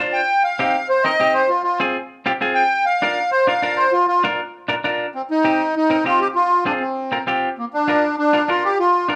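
A clean, bright semi-hollow electric guitar opens this short latin cut from a longer piece, its picked, compressed accompaniment sitting up front with a hollow-body ring. A tenth of a second later the accordion enters with the melody, reedy and sweet, its light tremolo tuning and plate reverb giving the tone an airy shimmer. The accordion carries a featured solo through the first 5.1 seconds before the music moves into a second section, cycling twice through C minor, F minor and B-flat. The feel is straight, danceable and passionate, with both instruments placed up front in a moderate studio room. The overall production leans dark and warm.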